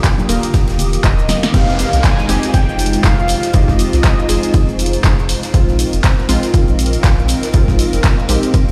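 A punchy, tape-saturated electronic kick sits up front in this smooth, moody deep house excerpt, driving a swung 4/4 groove alongside an analog drum machine whose claps, hi-hat, shaker and snare carry a short room sound. A very quiet acoustic rock kit adds a big-room snare and bright ride cymbal, while close, dry, ringing congas play in the background until 1.4 seconds. A round sine sub bass and detuned sawtooth keys, their stabs colored by chorus, tape echo and a filter sweep, pump against the kick. Behind them, a hollow, flute-like pad warbles with ensemble chorus and a moving notch, and a cloudy granular pad evolves in a blurred shimmer. After a drum fill and band accent, the drop lands at 1.5 seconds, moving from Ebmaj9 to Fm9 as a background downlifter sinks away. A velvety, full-bodied lead with vibrato, 12-bit sampler grit and digital delay sings from 1.0 to 5.3 seconds, and the whole mix sounds as if played on a big system in a bare stone room.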